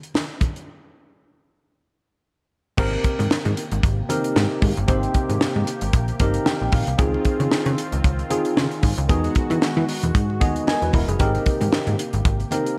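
Smooth and danceable, this excerpt of early-eighties boogie funk moves at 114 BPM in Ab major with a lightly swung sixteenth feel, as a dry, tight drum kit with bright cymbals and a high-tuned snare plays up front beside very quiet, low-tuned vintage congas before a short break. At 2.8 seconds a punchy sawtooth bass with a plucky filter, a mellow, slightly out-of-tune tine electric piano through a combo amp with lush chorus, and a brassy, detuned analog pad in the background arrive over Abmaj9, Dbmaj9 and Emaj9 chords. The electric piano adds brief fills at 5.9 and 10.1 seconds, set in light reverb and studio ambience.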